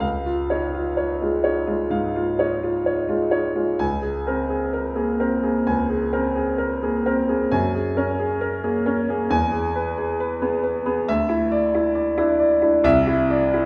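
Impressionist classical solo piano, serene and dreamy, in which a clear, up-front concert grand with deep bass moves in free rubato through lush chords running from Dbadd9 to Cadd9, its open tone bathed in the wet reverb of a recital hall across this 13.7-second fragment of a longer piece.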